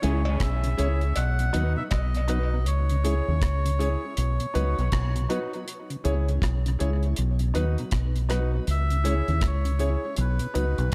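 A swung sixteenth-note reggae groove in 4/4 rides on a dry drum kit with a tight kick, hi-hat and rim click, while a dark, round fingered electric bass sits up front and a band-limited cowbell adds vintage color in the background from 0.3 to 2.1 seconds. Over a heavy, spacious bed rocking between two chords, a reedy, breathy melodica carries the tune and an intimate baby grand piano with audible action noise adds short stabs, both trailed by tape echo. A mellow tonewheel organ with key click and slow rotary speaker murmurs in the background, its own tape echo feeding the echo-heavy mix of this dub reggae excerpt from a longer piece.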